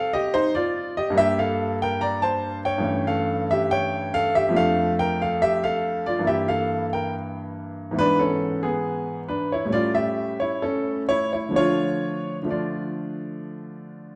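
A clear, intimate baby grand piano sits up front with its action noise audible, playing a solemn, introspective baroque-style suite movement alone in an unhurried rubato that moves through minor harmonies toward a dominant seventh and settles home, all bathed in a recital-hall reverb within a dark production, in this short excerpt from a longer piece.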